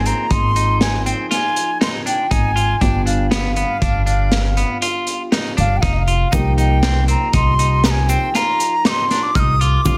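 A close-miked, reedy wooden flute carries the melody from the start with vibrato and tongued notes, bathed in plate reverb and tape echo, over a long-sustaining baby grand piano and a woody pizzicato upright bass that sits up front. Almost at once, a bright, clean electric guitar adds picked arpeggios, and a gritty, saturated breakbeat kit with a high-tuned snare and tight kick drives the 7/4 groove; a grainy tube shaker slips into the background at 6.3 seconds. This driving, intricate progressive piece, cut from a longer work, has a dense, heavily limited modern master in a moderate studio room.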